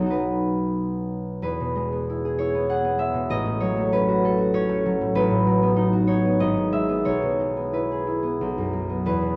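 A dark, warm recording in a moderate large-studio reverb places a solo concert harp up front, its acoustic, fingerpicked tones ringing from G#1 to F#5. This short classical fragment, cut from a longer piece, moves in a dreamy, graceful 3/4 at 88-99 BPM with rubato in E major. After opening on B, the harmony settles on E at 1.4 seconds, passes through F#m/A, E/G# and E/B, and comes to rest on B5 at 8.4 seconds.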